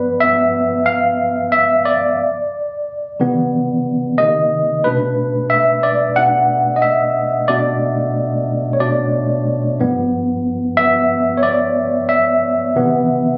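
Captured on a phone in a room with a club-like reverb, this short R&B fragment has a sultry, introspective mood at 91 BPM, with a lazy sixteenth-note swing in B phrygian. A lone tine electric piano plays throughout, sitting up front with a worn, slightly out-of-tune tone, lightly overdriven and heard through its built-in speakers. It drifts through G6, Cmaj9, Cm7 and Bm7 before returning to G6 and settling on Cmaj7 at 12.8 seconds.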